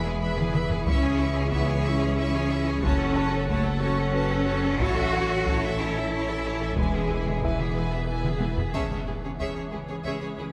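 A rich, focused cello section carries the bass line of this tense, futuristic hybrid score, bowed with vibrato and a lush symphonic weight. It is doubled below by a double bass section and a deep, thick, saturated sub bass. The piece moves at 61 BPM in a slow, straight 6/8 in C# minor. Above the low strings, a symphonic violin section sings the expressive melody with a soft attack, while a clear studio violin section traces a second line and a smooth, even viola section fills in the accompaniment. Mellow French horns hold chords in the background beside a swarming, detuned electronic drone with a granular, wave-folded texture and its own reverb, and a very quiet felt-muted upright piano adds an intimate, dark layer with audible action noise. Taiko drums played with hard sticks enter at 0.4 s with a short fill, and another fill leads into an electronic impact at 8.7 s as the harmony returns to C# minor, all set in a wet scoring-stage reverb.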